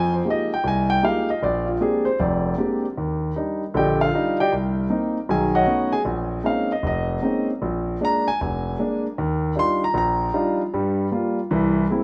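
Swinging at 155 BPM in 4/4, this cool, late-night solo jazz excerpt features a warm, up-front concert grand piano ranging from F1 to C6, its deep bass and long sustain carrying a progression that moves from Fm11 through Ebmaj7, B9 and Ebmaj9 to a closing Caug7 over 12 seconds, set in light reverb and small room ambience with the rough feel of a home demo.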